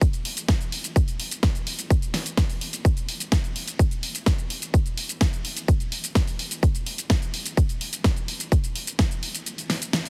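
A straight 4/4 pulse at 127 BPM drives this short EDM passage, which is cut from a longer piece and carries a triumphant, euphoric mood. A punchy, layered electronic kick sits up front from the start and runs until 9.1 seconds. Alongside it, a produced pop drum kit plays hi-hat, shaker and snare through to 10.1 seconds, its fat snare and warm hats re-recorded in a small room and also placed up front. With the kick gone, that kit carries the last moments on its own. The sound is dry, with little reverb, and heavily compressed, giving it a radio-ready, multiband-squeezed density.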